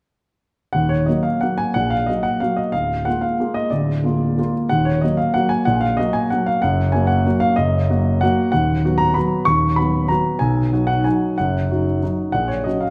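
Elegant and bittersweet, this short fragment of a classical piano waltz moves in a lilting three-beat metre, shaped with a flexible, rubato feel. A concert grand carries the whole piece as a solo instrument, entering at 0.7 seconds and playing through to 12.9 seconds across a broad range, from deep, resonant lows up into the upper treble. The piano sits up front and sounds intimate and natural, close enough that its mechanical action noise can be heard beneath the notes. Its harmony stays rooted in a minor-key home before turning toward brighter major chords near the end, which gives the passage its mix of grace and melancholy. A generous recital-hall reverb, lingering about 1.5 seconds, wraps the warm instrument in a sense of space.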